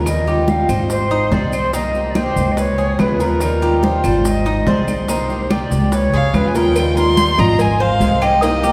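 Cuban son and guajira in a relaxed, danceable groove, this short excerpt opens with picked parlour acoustic guitar, metallic double-strung tres arpeggios and a woody, thumpy upright bass played pizzicato up front, soon joined by a distant, airy flute second line with vibrato and crisp attack. Percussion sits low in the mix: bright, thin-skinned congas under soft hands, very quiet round bongos and cowbell, grainy maracas and saturated, compressed claves, with a drum fill at 6.6 seconds. At 6.1 seconds a single bowed violin, focused and boxy with vibrato, takes the melody up front, all set in the long, wet reverb of a church.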